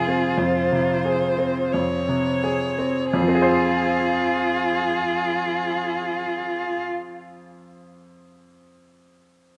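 Opening together, a smooth, evenly bowed solo violin carries the melody over a rich, up-front cello that sings a second line with vibrato, soft attacks and expressive portamento, while a bright, brilliant baby grand piano accompanies in this solemn, melancholic slow romantic movement for piano trio in F minor at a rubato 43 BPM, easing back over the first 3.1 seconds before the strings stop at 6.8 seconds and the piano rings on alone to 9.6 seconds, all captured with close, detailed microphones in a moderate concert hall reverb.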